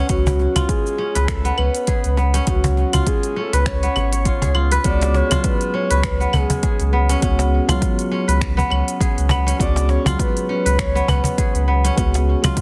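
A ringing, fingerpicked kora arpeggiates with tape echo over a round sine sub bass with sidechain pumping, while a very quiet bronze singing bowl shimmers with slow metallic beating, setting a mystical, warm organic downtempo groove at 101 BPM on a C#7sus4 chord. A breathy, flute-like synth lead with subtle chorus, vibrato and tape echo carries the melody, and the swung rhythm comes from a deep electronic kick, a snappy close-miked cajon struck with hard hands, and a produced afro-pop kit of cabasa, claves, finger snaps, smooth hi-hat and a softly clipped snare. At 4.8 s a dark, intimate felt-muted upright piano joins with vintage 12-bit grit, sidechain pumping and tape echo, all in light small-room ambience under a dense, heavily limited master.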